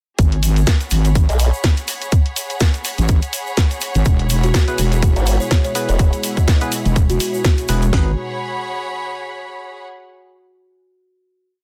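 This gritty, bouncy bass house piece in G# minor opens at 0.2 s straight into a drop. A heavy, saturated wobble bass sits up front beside a garage drum kit whose tight four-on-the-floor kick and cracking snare are just as forward, while a second kit layer adds bright programmed hats and a backbeat. At 124 BPM with a swung sixteenth feel, a grainy egg shaker plays hand-played sixteenths in the background, and a lush, bowed studio string section holds slowly shifting chords with sidechain pumping. A detuned, pulse-edged formant-sweep wobble bass cuts in briefly with modulated phrases of changing wobble speed, answering the first bass. When the harmony moves from G#m to E at 4.1 s, an evolving sawtooth pad with a filter swell arrives, soon joined by a woody kalimba playing short answering phrases with delay and by hollow organ stabs in sparse, echoing, rootless chords. At 7.9 s the drop gives way to a final G#m chord carried by the strings, all in a dense, heavily limited mix with little reverb.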